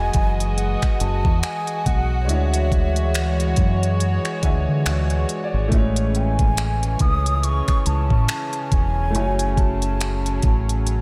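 A breathy flute melody opens this dreamy, smooth contemporary R&B passage at 70 BPM, joined from the start by clear baby grand piano, softly bowed symphonic strings and a round, dark fingered electric bass that sits up front. The flute is mellow with vibrato and a crisp attack, its highs rolled off and trailed by a diffuse ambient delay as it sings expressively high over the band. The strings hold floating, pure sustained chords played sul tasto, while the piano's long-sustaining accompaniment steps forward with a fill from 4.0 to 5.7 seconds. An electronic, produced drum kit with a knocking kick, silky hi-hat and finger snaps settles into a lazy 16th-note swing, its tape-tinged sound placed close to the listener. The harmony drifts through Emaj9, Dmaj9#11, Amaj7 and F#m7, and a roomy church reverb soaks the whole mix in a hazy glow before the kick drops out at 10.9 seconds, as this section is cut from a longer piece.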